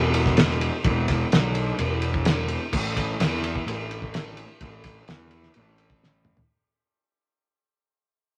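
A fuzzed, picked electric bass opens this short psychedelic rock fragment, joined almost at once by a cloth-damped drum kit, setting a hazy, kaleidoscopic mood at 128 BPM in a straight 4/4. The bass sits low and up front, its overdriven tone punchy and thick with fuzz. The drums are dry and thuddy, with a fat snare, tight kick and dark, rolled-off cymbals across crash and ride, plus toms, all carrying a saturated, gritty edge. A moderate studio reverb and a layer of vinyl crackle give the sound an aged character. The passage fades out across its whole length, and a drum fill arrives at 6.0 seconds just before it ends.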